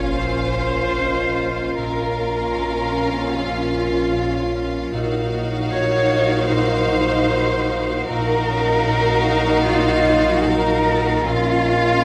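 A warm, up-front cello section with portamento carries the bass of this ominous, eerie cinematic excerpt in Bb minor at 76 BPM, alongside a rich double bass, a background viola section, violins holding a focused melody and a second line, mellow French horns in sustained chords, a fingerpicked harp riff, a dark soft-mallet vibraphone, an icy, crystalline glass pad entering at 0.4 seconds, and a huge, barely audible impact opening the passage, all bathed in wet concert-hall reverb as the chords move from Bbm to Ebmadd9/Bb and back.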